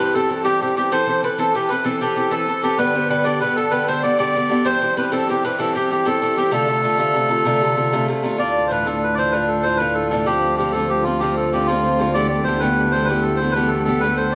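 A wet recital hall reverb, with a decay of 1.7 seconds, surrounds this spirited, wild Celtic slide, cut from a longer piece in D dorian and moving at 128 BPM in 12/8 with a straight feel. Up front, a reedy, nasal melodica carries the tune between F4 and D5, its breathy plastic-case tone sitting forward in the mids. Beside it, an Irish bouzouki picks a metallic accompaniment on double strings from G2 to B4, while a bright bowl-back mandolin adds a picked second line in the background until 8.1 seconds. At 8.4 seconds the music moves into a new section, and a single bowed cello enters on a low D2 drone, its soft attack, vibrato and portamento giving it an expressive, warm voice. The harmony runs from C through Amadd9, G and Dm7 in the opening section, then shifts to Dmadd9, Fsus2 and Em in the second.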